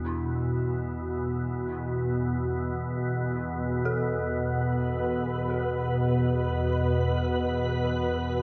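Floating in free time, this dark ambient drone fragment, cut from a longer piece, feels ominous and vast, resting on an E5 chord. Up front, a calm organ-like drone holds the low register from E2 to B2 for the full 8.4 seconds, its detuned sine unison swelling in slowly and sustaining under an ensemble chorus. Farther back, an eerie detuned synth bell traces inharmonic FM arpeggios between E4 and A4, each struck tone decaying into chorus, dub echo and shimmer reverb as the part fades out across the whole passage. At 4.6 seconds a flickering, grainy triangle texture enters on B4, its granular haze drifting through shimmer reverb. The mix sits in a wet echo chamber with a 2.2-second decay, giving the sound a cavernous, echo-heavy depth.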